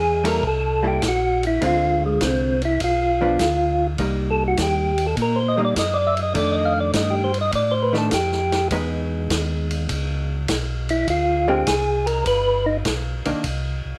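Soulful and bluesy, this soul jazz organ trio excerpt swings at 102 BPM in 4/4, cut from a longer piece and built around a tonewheel organ solo that runs through the whole passage. The lead organ carries the melody with a round, percussive tone, its third harmonic percussion and slow rotary speaker giving each note a clean, mellow bite up front in the mix. Beneath it, a second tonewheel organ supplies the bass line with a dark, rounded sound coloured by chorus vibrato and the same slow rotary speaker. A vintage hollow-body electric guitar adds picked, compressed accompaniment, while a vintage acoustic drum kit of hi-hat, kick, snare and ride sits mid-forward with dark cymbals, a tight kick and a gritty, saturated, rolled-off character. The harmony moves from Gm69 through Cm7, F13 and Emaj7 before landing on G at 12.3 seconds, and the parts drop out one by one as the organ bass holds on until 13.9 seconds, all set in a moderate club reverb.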